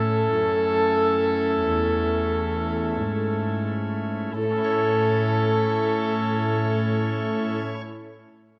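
A straight 4/4 pulse gently slows over the first 4.4 seconds of this serene, dance-like excerpt from a baroque-style sonata movement with continuo. A pure, wooden baroque flute carries the melody with vibrato and a crisp attack, while a dark, reedy violin on gut strings plays a second line and a bowed period-style cello holds the bass. A nasal cornet stop on pipe organ, with audible chiff, supplies the accompaniment up front until 7.8 seconds, all set in a resonant recital hall.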